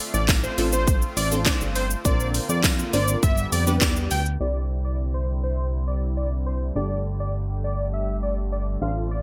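Carefree and summery, this dance-pop clip moves at 102 BPM in C major, with a punchy, layered house drum kit, cracking snare and gated reverb driving the opening drop alongside a jingly acoustic tambourine until the kit drops out at 4.4 seconds, when a filter sweep carries the rest. A glossy, dark chorused synth bass sits up front beneath crisp, detuned wavetable chord stabs with a moving notch and soft, smooth supersaw chords, all pumping against the sidechain. On top, a thick, bold unison lead with vibrato and digital delay sings the melody, framed by a bright 1980s-style digital sheen.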